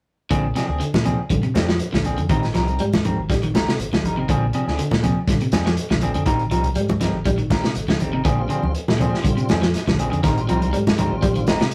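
A driving, joyful afrobeat groove opens with a crunchy, dark, gritty breakbeat kit up front, its tight kick and medium-tuned snare joined by a round, punchy fingered bass, a slightly broken-up electric guitar picking arpeggios and a clean semi-hollow guitar playing stabs over Bb9 and Abmaj9 chords, while bright, hard-handed congas enter in the background at 0.9 seconds and a full tonewheel organ with slow rotary speaker and chorus vibrato joins at 8.3 seconds, all in a rough rehearsal-room sound with tube saturation.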